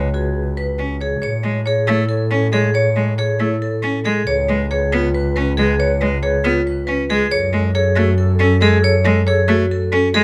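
Classical minimalist pattern music in 7/8 at 276 BPM (eighths), this hypnotic, propulsive excerpt in A major sets a metallic, ringing vibraphone melody with motor vibrato against warm, percussive marimba arpeggios played with hard mallets. Up front, a clear, focused bowed cello and a rich, smooth bowed double bass carry the accompaniment and bass line, while a dark, distant clarinet adds a second line in the background. Close, detailed microphones and a dry sound frame the harmony as it moves from Amaj7 at 1.2 seconds to C#7 at 4.3 seconds and F#madd9 at 7.3 seconds.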